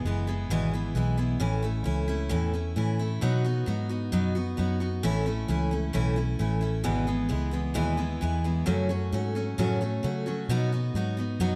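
A picked steel-string acoustic guitar sits up front with a bright, full-bodied dreadnought tone, carrying the accompaniment through this heartfelt, down-home honky-tonk and classic country excerpt in E major at 132 BPM in a straight 4/4. Beneath it, a vintage muted fingered electric bass adds a dark, round, punchy foam-muted line, both parts playing throughout the 11.6 seconds in light reverb. The chords move from E to A and B, return through A to E, then pass through F#m to close on B.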